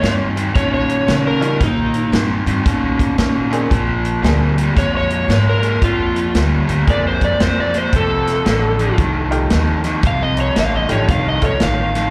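Electric blues shuffle at 114 BPM with a swung feel: a rollicking, gritty excerpt heard live through a venue's PA into a reverberant recital hall. An overdriven slide guitar carries the melody over a raw, up-front garage guitar riff with overdrive and slapback echo, a woody pizzicato upright bass and a vintage acoustic kit with a punchy kick and rolled-off top, all moving through Eb7, Bb9 and F7. A bright, slightly detuned upright piano with audible action noise and its own slapback echo sits lower in the mix, adding accompaniment from 1.4 s to 11.6 s.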